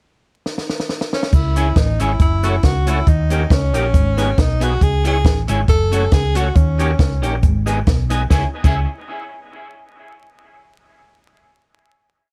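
Vinyl crackle and a small room frame this driving, mischievous ska piece, where a dry cocktail kit with a high-tuned snare and side-stick backbeat opens with a fill, a round hollow-body bass walks up front with slides, clean picked guitar and a gritty overdriven organ with slow rotary and key click chop the off-beats through dub echo, a distant cabasa sits in the background, and a breathy subtone tenor saxophone plays scooped, motif-based call phrases before the band lands on a final chord at 8.3 seconds.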